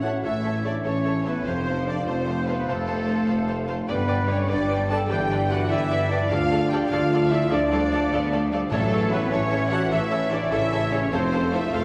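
Heroic adventure film score in 12/8, this soaring passage is cut from a longer piece and carries the full orchestra through a bright, triumphant chord progression. A rich, focused violin section with vibrato carries the melody, while a clear, intense second violin section, an airy flute section with a crisp attack and a solo clarinet weave quiet supporting lines alongside the smooth-topped viola accompaniment. Dark French horns hold sustained chords at the front of the brass, backed by mellow, roomy trombones, as a distant, punchy trumpet section adds stabs from the background. The low end rests on an even double bass section and a warm solo tuba, with a lush cello section joining at 0.2 seconds. A ringing, fingerpicked concert harp spreads arpeggios through the texture, and soft-mallet timpani sound only between 8.7 and 9.3 seconds. A generous scoring-stage reverb places the ensemble further back in the room, lending the whole passage a grand, spacious sheen.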